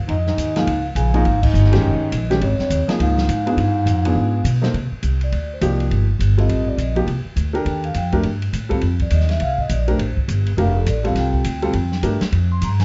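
A fast swing at 206 BPM in 4/4, with swung eighth notes, drives this intense, cool modal jazz excerpt, which settles into C dorian from 4.7 s. Pizzicato upright bass sits up front with a woody tone, while an open acoustic drum kit in a small, airy room adds dark ride and crash cymbals, hi-hat, a medium-tuned snare and a boomy kick. A baby grand piano comps with an intimate, natural sound, its action noise audible and its notes short in sustain. In the opening, a clear bass clarinet plays a distant, roomy second line with vibrato and scooped notes until 4.4 s, and the band hits an accent at 1.4 s. The vibraphone, played with soft mallets and a slow motor vibrato, carries the melody with a mellow, metallic ring and takes a solo from 4.7 s to the end. The production is dark, with moderate studio reverb.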